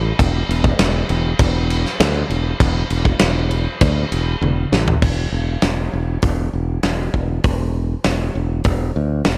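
This hard rock excerpt opens on a bright, growly fingered electric bass at 0.0 seconds, sitting up front and low between E1 and D2, with a big acoustic rock drum kit joining at 0.2 seconds. The mood is swaggering and anthemic, moving at 99 BPM in a straight 4/4. The drums sound mid-forward with a rolled-off top, a punchy kick, a medium-tuned snare, hi-hat, toms and crash cymbal, all carrying the air of a large room. A drum fill from 4.4 to 5.0 seconds leads into a new section at 5.0 seconds, and both parts play on to the end at 9.4 seconds. The overall sound is dry and close, with the direct bass and the drums sharing the foreground at a similar level.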